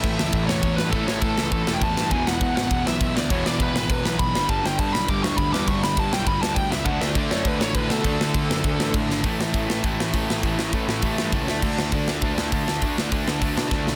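Energetic and upbeat, this short cut from a longer punk rock piece charges along at 202 BPM in a straight 4/4, moving through chords of A, E5, G and D5 before settling on A5 and D5 in its later part. A bluesy overdriven lead guitar carries the melody from the start, its distorted, warm tone trailed by digital delay, and it falls away at 8.9 seconds. Beneath it, a cranked stack guitar with a bright, picked edge drives the riff from the background, alongside a sludgy distorted guitar sitting very quiet in the mix, while a second cranked stack guitar, double-tracked and very quiet, joins the riff at 4.5 seconds. A fuzz-laden picked electric bass adds a growly, overdriven low end, and a tight metal drum kit sits up front with a polished, airy big-room sound, bright cymbals, a medium-tuned snare and a tight kick, marking the turn into the second section with a fill at 9.1 seconds and another near the close. 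The whole mix is a dense, heavily limited modern master under a light reverb.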